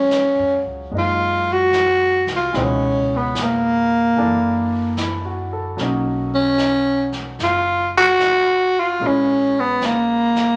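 A slow swung 4/4 pulse sets the feel, with a vintage brush kit entering at 0.1 s on brushed snare and hi-hat, sounding distant, roomy and rolled-off at the top. This is a melancholic, intimate jazz ballad, cut from a longer piece. Up front, a growling tenor saxophone carries the solo melody with a breathy, raspy, gritty tone and scooped notes. A clear baby grand piano with short sustain comps beneath it while a woody pizzicato upright bass anchors the low end. The harmony moves from Ebm11 through Dbm7 and Gb7alt to a lingering Bmaj9 before settling on Bbm7b5, all bathed in a wet, large studio reverb.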